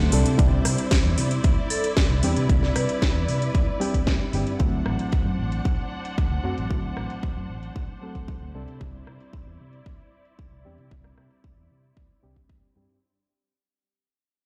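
Groovy and feel-good, this nu-disco excerpt, cut from a longer piece and fading out throughout, rides a punchy, up-front electronic kick and a house kit with a cracking snare and metallic, filtered hats under a bright, amped fingered bass with an envelope filter, while a reedy, worn, slightly out-of-tune electric piano and a lush, bowed symphonic string section pump and sweep through filters over Cadd9 and D7 chords, a ringing vibraphone glints briefly in the background around 1.7 seconds, and the whole mix sits in a bare stone room as if played on a big sound system.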